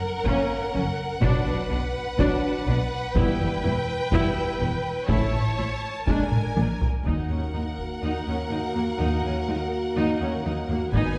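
Heavy-stick taiko drums drive a relentless, straight 4/4 pulse at 124 BPM through most of this dramatic, epic orchestral film-score excerpt in B minor, with a drum fill from 6.3 s leading into a shift to E-flat minor at 7.1 s, where very quiet, articulate hard-mallet timpani strike briefly, while lush bowed violins carry a focused, vibrato-laden melody over an expressive soft-attack second violin line, rich viola accompaniment and mellow sustained French horn chords, above a background cello section and an even, close double bass foundation, the ensemble heard from further back in a wet scoring-stage reverb.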